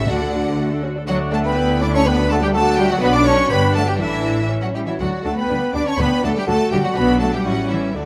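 A quick, spirited classical-period movement for symphony orchestra opens in D major at 122 BPM in a straight 2/4, with the string sections, a wooden flute and a very quiet French horn section sounding together from the start. The first violins carry the melody up high with a clear, smooth, even tone and vibrato, while the second violins add a lush, soft-attack second line and the pure, distant flute shares that role in the background. Violas fill in an even accompaniment, cellos and double basses anchor the bass with a rich, focused sound, and the mellow, vintage-tinged horns hold sustained chords beneath. A roomy trumpet section adds stabs from 0.1 seconds, and a dark solo bassoon joins the accompaniment at 0.6 seconds. The graceful harmony moves through D, G, B minor, a suspended A and A7 inside a moderate scoring-stage reverb, and the passage is cut from a longer piece.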